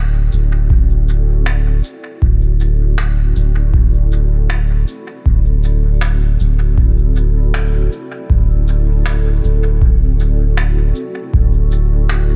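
A dry, close-sounding mix carries this peaceful, hazy ambient dub excerpt at 79 BPM in 4/4, with a gentle 16th-note swing in D mixolydian over a single D9 chord. A round, up-front sub bass with tube saturation holds the low end on D1 throughout, while a cloudy granular pad drifts in blurred, slow-attack chords bathed in its own reverb. Tape-tinged electronic shaker and finger snaps enter at 0.3 seconds through dub echo, and a deep analog kick sits in the background from 0.7 seconds.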